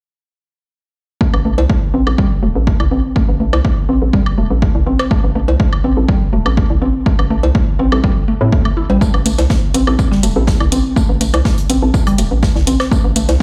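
Clinical and quirky, this minimal techno excerpt at 123 BPM in A minor rests on an Am7 chord, with an overdriven, punchy kick and a hollow, bouncy FM bass pumping up front beneath a woody, mallet-like synth pluck riff swept by a filter and soaked in chorus, tape character and dub echo, while an overdriven woodblock and cowbell, a muted, detuned dub chord stab filtered in the background, an airy acoustic kit of hi-hat, snare and tambourine joining at 9.0 seconds, a metallic analog hi-hat, and a very quiet riser at 13.3 seconds all ring out as if played on a big sound system in a bare stone room.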